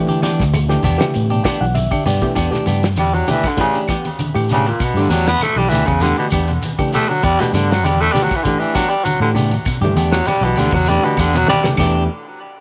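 Afrobeat excerpt with a hypnotic, intense mood, where a barky overdriven reed electric piano, a mellow guitar playing arpeggios, a round punchy fingered bass, hollow-body guitar stabs, a damped 70s drum kit with a fat snare, low-tuned congas, a grainy shekere and woody claves ride a single Em7 before a raspy, gritty baritone saxophone with tape echo enters up front at 3.0 seconds for a vibrato-laden solo, closed by a drum fill at 11.3 seconds.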